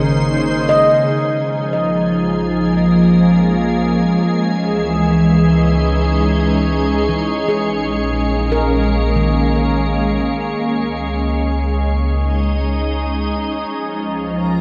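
A slow, unhurried triple metre with a straight feel carries this serene, spacious ambient fragment, cut from a longer piece. A soft, organ-like pad sits up front, holding pure, bright chords with a slow attack and long release, thickened by ensemble chorus and its own reverb. Handpan arpeggios ring out in a mellow, airy, meditative voice with delay until 11.8 seconds. Beneath them a round, deep analog bass sustains dark, detuned low notes. A calm, evolving organ-like drone sits in the background for the opening moments, drops out at 1.4 seconds and returns at 13.7 seconds. The harmony moves through Bbm7, Dbmadd9 and Dbsus2 before settling on Db6, all bathed in a vast, echoing cathedral reverb.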